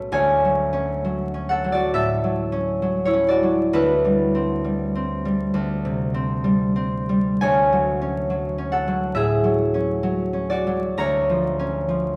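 Graceful and peaceful, this classical solo harp passage moves at 66 BPM in 4/4 with an uneven, rubato pulse, cut from a longer piece. The concert harp sits up front, its fingerpicked, ringing tone spanning from B1 to A#5 through chords of Dmaj9, Cmaj7/D, Dmaj7 and C#/D. A wet recital hall reverb of a church or concert hall surrounds it, with vinyl crackle beneath.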